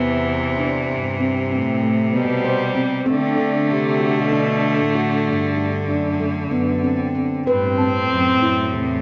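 Light reverb gives this short cut from a longer chamber piece a gentle sense of space, and its mood is playful and restless. Moving in 7/8 at 191 BPM counted in eighths with a straight feel, it passes from Cmaj7 to D at 3.1 seconds and on to Am7. A bowed cello carries the melody in a soft-attack sul tasto voice that sounds pure and floating, set back in the distance. Beside it, a bowed viola plays a second line with a nasal, reedy gut-string tone and light vibrato in period style, while a second cello supplies the bass with a biting, intense sound and vibrato, standing up front. A handpan threads ringing arpeggios through the ensemble, its nitrided steel and sharp finger strokes giving it an airy, meditative shimmer. At 7.8 seconds a small celesta enters quietly in the background, adding a delicate, bell-like touch from soft felt hammers with a mellow, vintage, band-limited sweetness.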